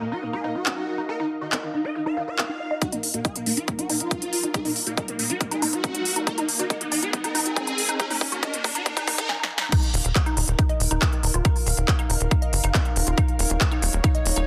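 Psychedelic trance at 139 BPM with a psychedelic, hypnotic mood, opening on a swarming, aggressive rave lead with chorus, phaser and dub echo, a woody wave-folded pluck riff with digital delay, a pulsing gated chord texture and an ethereal pad, all pumping against the sidechain. Clap, snare, smooth hats and crash arrive at 0.7 seconds and a punchy, tape-warm kick at 2.8 seconds, launching a build-up with a filter sweep, an electronic riser and drum fills. The drop hits at 9.7 seconds, and a tight, driving sawtooth sequencer bass takes over the low end just after, all within a dense, heavily limited modern master.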